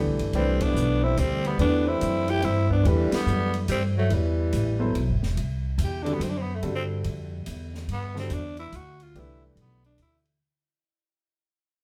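Heard from further back in a studio room with a wet reverb, this excerpt of searching, open modal jazz swings in 3/4 at 143 BPM, with the band opening on a Cmaj9 chord and hitting shared accents early on. A raspy, growling tenor saxophone carries the melody up front, and a mellow alto saxophone with vibrato and scooped notes plays a second line until 4.9 s. A warm baby grand piano, a woody pizzicato upright bass and an acoustic drum kit with dark cymbals, a high-tuned snare and a boomy kick support them as the tenor takes a solo from 5.4 s while the piece fades out.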